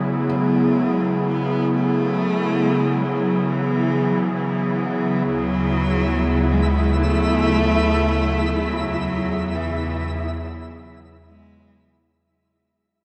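A straight 4/4 at a slow 69 BPM carries this serene, reflective ambient passage in F# minor, cut from a longer piece, as an airy, breathy pad with chorus and a vintage warble sits up front holding sustained chords through F#m7, Dmaj9 and C#m7/E. A close, focused bowed cello sings the melody with vibrato, fading in across the whole passage, with shimmer reverb and delay trailing behind it. At 5.7 seconds a twinkling granular texture with an octave-up shimmer drifts in above, and from 7.5 seconds everything fades out, all of it set in a huge, wet reverb with a cassette-tape colour.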